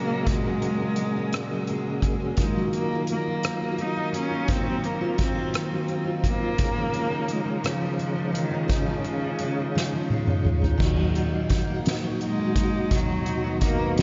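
Tender and swaying, this slow six-eight pop ballad moves at 57 BPM, with a rich, bowed cello singing the melody through a diffuse ambient delay over double-tracked picked steel-string acoustic guitar and a mellow, round tonewheel organ holding sustained chords with chorus vibrato and a fast rotary speaker. A soft-mallet drum kit enters at 0.3 seconds with dark cymbals, a fat snare and a boomy kick, then plays a fill from 9.8 to 10.8 seconds as the harmony shifts from Gbadd9/Bb through Ebmadd9 and Dbadd9 toward Ebm and Cb/Eb. The whole short excerpt is soaked in a huge, dreamy reverb with its highs rolled off, giving it a hazy, distant glow.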